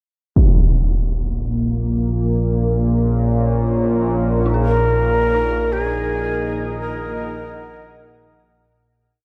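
Vast and ominous, this short dark ambient drone in free time opens with a huge, dark impact at 0.4 seconds. A mellow, evolving analog drone and a deep, warbling pad then settle into a long ambient reverb on slowly shifting chords moving from Bbm to Ebm, while a very quiet, eerie, inharmonic synth bell drifts in two unequal loops. At 4.7 seconds an up-front, breathy bamboo shakuhachi enters with a free, reedy melody under shimmer reverb as the piece fades out.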